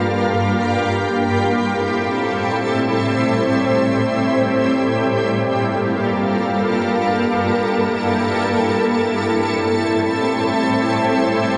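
Melancholic and spacious, this brief hip hop excerpt unfolds in free time, carried entirely by a single shimmering ambient pad that plays alone from 0.0 to 11.6 seconds. The pad sits bright and up front, its ethereal tone built from detuned unison voices, an octave-up shimmer and a sub octave beneath, with granular texture, chorus and its own reverb adding to the glow. Each chord arrives with a slow attack, sustains and fades on a long release, moving between Gm7 and Am7 across the passage. The whole recording is bathed in a lush hall reverb lasting about 2.2 seconds and carries the worn character of old cassette tape, with a warbly pitch drift that gives the held harmonies a gently unsteady sway. Tuned slightly sharp to A4 = 445 Hz, it feels like a hazy fragment lifted from a longer piece.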